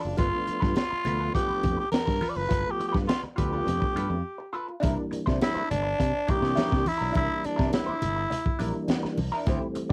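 This energetic, strutting funk groove opens with a growling tenor saxophone carrying the raspy, gritty melody up front, a dark hollow-body jazz guitar playing clean, compressed accompaniment through wah, and a bright, punchy fingered electric bass underneath. At 0.2 seconds a crunchy breakbeat drum kit arrives with a high-tuned snare, punchy kick and hi-hat, saturated and rolled-off at the top, alongside low-tuned congas struck with hard hands and a mellow tonewheel organ adding round stabs through chorus vibrato and a slow rotary speaker in the background. The groove moves from a G9 chord to a C9 as a new section begins at 4.8 seconds, just after a brief break. The saxophone, with its light vibrato, drops out at 8.9 seconds while the rest of the band carries on. The whole piece has the character of a home cassette recording with light reverb, and it is cut from a longer performance.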